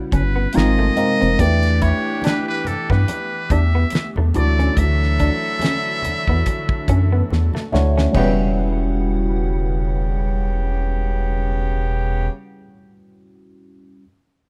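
A rough home-demo mix in studio reverb carries this sultry, soulful neo-soul R&B cut from a longer piece, where a breathy metal-muted trumpet sings the melody with light vibrato and slapback echo over a worn, overdriven tine electric piano with phaser, a lo-fi, slightly broken-up electric guitar second line, distant jazz-style horn stabs, a warbling flute-like pad in the background, a rubbery, up-front square bass, a damped 70s drum kit with a fat snare that plays a fill from 7.3 s, and very quiet low-tuned congas.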